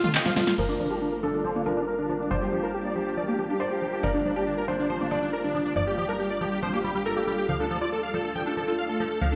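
Euphoric, soaring uplifting trance at 139 BPM in G minor, where a punchy analog drum machine fill and a faint analog pluck mark a brief break as a huge, thick supersaw lead, a shimmering ethereal pad and a squelchy liquid acid bass arpeggio sound from the start. These carry on over Gm7 and Dm, the supersaw under a filter sweep, joined by a plucky, funky analog bass, while a felt-muted upright piano adds a soft, intimate second line from 0.6 to 7.5 seconds, all bathed in a stone room reverb.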